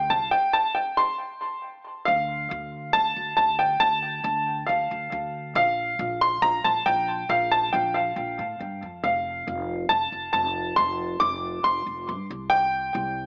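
An upright piano and a pizzicato upright bass begin together, opening a stirring, bittersweet stretch of indie folk in D minor, cut from a longer piece with a building arrangement. The piano carries the melody high in its range, between F5 and D6, and its warm, present tone sits up front, trailed by tape echo. Beneath it, the acoustic bass plays low and far back in the mix, its steel strings giving a dark, woody tone. At 138 BPM in a straight 4/4, the harmony moves from C5 through Dm at 2.1 seconds, then Bb5, F and back to C5. Moderate echo chamber reverb in a small room and an echo-heavy, AM radio character give the sound a hazy glow.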